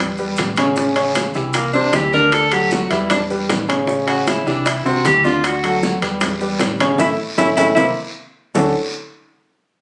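Afro-Cuban jazz in D major at 154 BPM in a straight 4/4, this short, lively and danceable cut from a longer piece moves through a cycle of Em, A7, C and D before resolving to Dmaj7 at 8.6 seconds. A clear, present grand piano sits up front with long sustain, carrying the accompaniment, while a dark, punchy hollow-body electric bass, fingered and amped with a round tone, holds the low end. The percussion section builds quickly: very quiet, low-tuned bongos played close and dry with soft hands, bright thin-skinned congas in the background, grainy, mellow maracas heard from a distance, a raspy guiro in a live room, and ringing metal-shell timbales. The tenor saxophone enters at 1.6 seconds for a jazz-style solo, its tone clear and roomy with light vibrato, sitting up front yet with a distant quality. Near the close, a band accent arrives at 7.0 seconds and a drum fill follows, pushing into the final chord. 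The recording has the feel of a phone capture in a club, with moderate reverb, compression and a muted top end.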